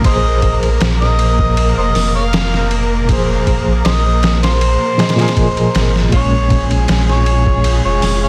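An overdriven harmonica carries the melody in this dark, melancholic trip hop fragment, its amplified, gritty jazz-style solo marked by vibrato, tongue slaps and scooped notes, coloured by 12-bit sampler grit and tape echo. Beneath it, a sampler-style drum kit sits up front at 79 BPM with a light swing, pitched down and compressed, pairing a thumpy kick and medium-tuned snare with hi-hat and ride cymbal. A round sine sub bass with tube saturation anchors the low end, while a reedy electric piano plays accompaniment with a fast tremolo, heard as if through its own built-in speakers. A distant, woody string section holds lush bowed chords with vibrato and sampler grit as the harmony moves from F minor to B-flat minor seventh at 6.1 seconds. At 6.6 seconds an airy, breathy wind-like noise layer drifts in, sitting in the background, and the dense, heavily limited mix is dry apart from that texture's reverb, with vinyl crackle throughout this short section cut from a longer piece.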